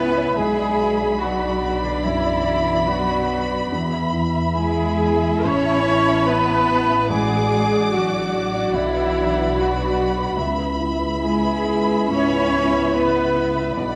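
A tender, uplifting cinematic passage in free rubato opens with the full ensemble at once: a focused, distant violin section carries the melody over a second violin section gliding with expressive portamento and a pure, hollow flute line with lifted highs, while a felt-muted upright piano with audible action noise murmurs in the background, a close, even viola section fills out the accompaniment, a roomy French horn section holds dark sustained chords, and a lush cello section joins a soft-attack double bass section to anchor the low end, set in a moderate scoring stage reverb as the harmony moves from Bm through E and Aadd9 to C#m7.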